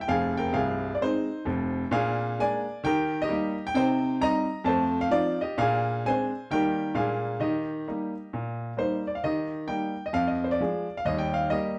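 A clear, boxy grand piano sits up front in a moderate large-studio reverb, captured live in one room, in this short stretch cut from a longer stride jazz piece. The solo piano swings exuberantly at 132 BPM in 4/4 with a swung eighth-note feel in E-flat major, ranging from deep bass notes to bright upper ones with a short sustain. The harmony cycles through Fm7, Bb7 and Eb, and a new pass through the tune begins at 9.2 seconds, touching a Ddim/F before landing back on Eb near 11.0 seconds.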